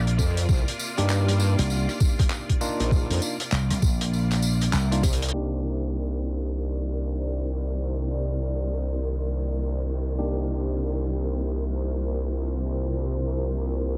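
Distant, lush bowed strings open this funky, playful glitch hop excerpt on a C minor ninth chord at 99 BPM with a swung sixteenth feel, their sustained chords roughened by 12-bit sampler grit, sidechain pumping and a low-pass filter, while a saturated, wobbling formant-sweep bass sits up front beside a bright, punchy slap bass with an envelope filter. A gritty, overdriven electronic kick, a muffled, dry soul kit with handclaps, hi-hat, rim click and crash, and a jingly close tambourine drive the groove through a band accent and a drum fill. Bell-like tine electric piano stabs with delay carry on after 5.3 seconds, when a filter sweep on the strings begins, and a deep, moody ambient pad drifts in behind them at 6.7 seconds, all under light reverb and vinyl crackle.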